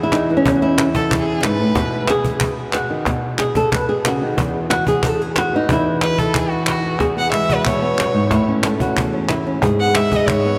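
Driven by a straight 4/4 pulse at 183 BPM, a snappy, compressed cajon with snares and hard hands sets a brisk flamenco groove, while crisp palmas hand claps sit close and dry in the background. Up front, a fingerpicked acoustic flamenco guitar carries the melody in E major, ranging from E2 to B4 through a festive, proud passage cut from a longer piece. A rich, focused violin with vibrato adds a bowed second line, appearing briefly at 0.9 seconds and returning at 6.0 seconds before taking a solo from 7.0 seconds as the harmony moves through E, A and G#madd11. Both the guitar and the violin carry a diffuse ambient delay. The whole mix is soaked in a wet cathedral reverb with a 5.5-second decay, giving the lively performance a dreamy, spacious glow.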